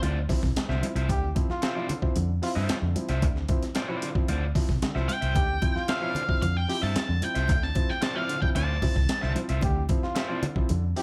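Hypnotic and sly, this funk groove sits on a single Dm7 chord in a straight 4/4 feel, cut from a longer piece. A compressed, gritty breakbeat-style kit sits up front with a thumpy kick and high-tuned snare, while a dark, round, foam-muted fingered bass adds punch underneath. A biting overdriven guitar picks out accompaniment as a woody upright piano with long sustain drops stabs, and damped, thick-skinned congas played with hard hands tick away in the background. From 1.1 seconds a bright trombone with light vibrato carries a second line, and at 5.1 seconds a dark octave-fuzz lead guitar steps up front with a short picked melody that ends at 9.3 seconds. Light reverb gives the mix a touch of space.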